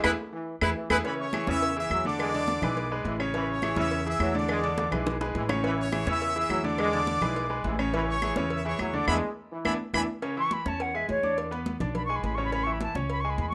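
A warm horn section opens this joyful, festive salsa cut at 209 BPM with a band accent and drum fill, over bright grand piano with audible action noise, a thumpy, gut-strung upright bass, trombones, and background congas, claves, bongos and cowbell. From 1.1 s a tight trumpet section takes the melody over chords moving between E7 and Amaj7, with a second band accent near 9.1 s. At 10.4 s a distant, pure-toned silver flute with vibrato takes an expressive solo, with the horns, piano and flute bathed in plate reverb within a rough home demo mix.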